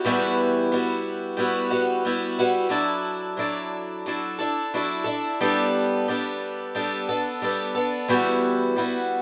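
Wistful and dusty, this short rock passage in E minor moves at an unhurried 90 BPM in a straight 4/4. A picked twelve-string acoustic guitar plays up front, its bright, shimmering, octave-doubled tone carrying a boxy body, a touch of swing and audible finger squeak as it moves from Emadd9 through Dadd9/F# and Gadd9 before settling back on Emadd9 at 8.1 seconds. A moderate studio reverb gives the cut-off fragment the feel of a live room.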